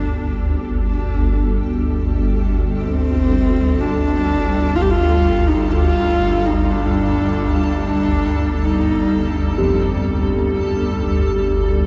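A swarming, detuned drone sits up front in this unsettling, desolate dark ambient piece in free time, while a blurred granular cloud pad fades in alongside a husky horsehead fiddle melody with light vibrato and portamento and very quiet, mellow piano arpeggios carrying audible action noise; the fiddle stops at 9.6 seconds as a ringing bronze singing bowl struck with a felt mallet enters, all set in a vast, echoing space.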